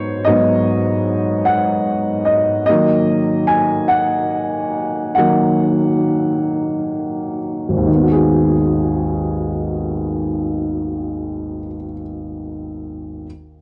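A baby grand piano carries this melancholic, aching pop fragment entirely on its own, its warm, open tone sitting up front with a long sustain that lets each chord ring. Set in G# minor and moving in a slow 6/8 at roughly 42-50 BPM, the playing spans from G#1 up to G#5, grounding the brooding harmony in deep bass notes while reaching into a gentle upper register. The harmony settles on G#m7, shifts to D#m, and returns to G#m7 at 7.9 seconds as a new passage begins. Between 2.7 and 7.9 seconds the tempo slows, drawing out the ache before the music moves on. A cassette tape character colours the piano, and a moderate studio reverb surrounds it, giving this home recording an intimate, slightly worn feel as it lifts a brief moment from a longer piece.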